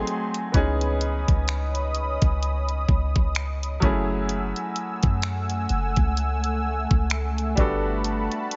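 A knocking kick, finger snaps and bright hi-hats from an up-front trap drum kit lead this tender, romantic slice of contemporary R&B, entering at 0.1 s over a slow, swung feel. Beneath them, a deep, boomy 808-style bass with a sine body and a noise layer strikes with a fast attack and decays, sitting close in the mix before it drops out at 8.3 s. A worn yet brilliant grand piano supplies the accompaniment, while a smooth, detuned sawtooth pad with a soft attack, long release and chorus holds sustained chords above it. The harmony moves from G#7b9 into C#m9, then F#m9, and arrives on Gmaj9 at 7.6 s. The sound is dry, close and softened in its top end, and this short passage is cut from a longer piece.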